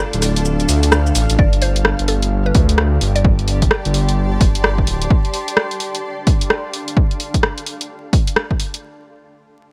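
UK garage in a skippy, late-night two-step vein at 129 BPM in D minor with swung sixteenths: a woody, round mallet-like pluck tinged with chorus, phaser and delay sits in the background over a very quiet breathy pad and a blurred, evolving granular cloud that pumps against the sidechain, while a deep, rumbling detuned saw bass and a tape-warm analog drum machine of hi-hat, rim click and shaker sit up front, joined by a punchy electronic kick at 1.4 s as the chords move from Dm to G7sus4 and Dm7, in a dry mix dusted with vinyl crackle.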